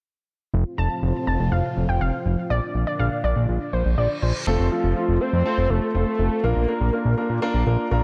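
A straight 4/4 pulse at 122 BPM drives this upbeat, nostalgic pop excerpt in F major, cut from a longer piece, with a thick, detuned analog bass carrying the F and Bb chords up front throughout while a swirling, phased pad and a warbling, lo-fi pluck with chorus and digital delay fill the opening section. A reverse cymbal leads into the second section at 4.5 seconds, where a concert grand piano with deep bass takes over the accompaniment and a fat, nasal lead with vibrato and delay sings the melody, before the piano adds a closing fill at 7.4 seconds. A lush hall reverb gives the dark production its depth.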